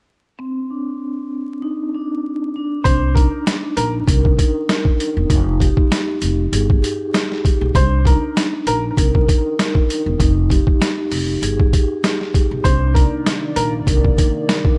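Dark and moody, this boom-bap hip-hop excerpt in C minor moves at 98 BPM with a 16th-note swing, opening on a mellow, ringing vibraphone played with soft mallets and colored by cassette-tape softness before a gritty, overdriven sampler-style kit with a thumpy kick and high-tuned snare arrives at 2.9 seconds alongside a woody, growly pizzicato upright bass. Short phrases from a slightly detuned upright piano, intimate with audible action noise and touched by delay, surface three times over the Cm9 to Fm9 changes. A hollow, flute-like pad with chorus enters at 12.7 seconds, while vinyl crackle and lossy artefacts lend the whole a worn, dusty texture.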